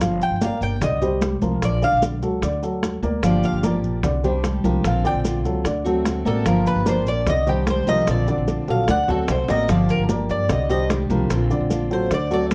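A dark, mellow baby grand piano rolls out arpeggios from the start, joined by a woody, thumpy upright bass plucked up front, close, tight high-tuned bongos, thick-skinned congas set in the background and grainy maracas, setting a sultry Cuban son and guajira groove in straight 4/4. Almost at once the Cuban tres takes the lead with a metallic, double-strung solo, its picked lines carrying a slapback echo and sitting forward in the mix. At 3.2 seconds a full-bodied jumbo steel-string acoustic guitar enters with picked accompaniment beneath it. The harmony cycles through Gm7, Cmadd9 and Bbadd9 to D7 before returning to Gm7, and a drum fill arrives at 8.9 seconds. The whole cut, taken from a longer piece, sits in a small, moderate room and carries the worn, warbling pitch drift of old cassette tape, lending it a vintage feel.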